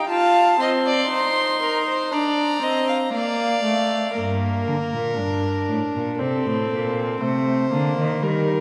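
A solemn, serious baroque-style fugue for string quartet at 59 BPM in 4/4 opens with a reedy, gut-string first violin carrying the melody high above a period-style viola accompaniment, joined at 0.1 s by a second violin line played with light vibrato. The first violin stops at 4.1 s, and at 4.2 s a rich, nasal cello takes up the bass as the harmony moves from F and Bb to Gm and Cm13/A. Each bowed part is a single player, set in a wet concert hall with a 2.5-second reverb, in this excerpt from a longer piece.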